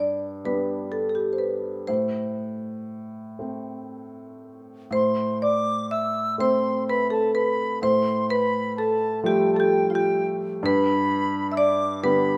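In a free, rubato 6/8 lilt hovering around 39-43 BPM, this fragment of a Celtic slow air in A minor carries a longing, mournful mood as a dark, rosewood marimba sings the melody up front over an intimate upright piano whose action noise and long sustain color the G, A minor and Fadd9/A harmonies. At 4.9 seconds a reedy, airy wooden flute enters above with a second line, its close-miked, tongued tone shimmering with vibrato, while light reverb gently surrounds the trio.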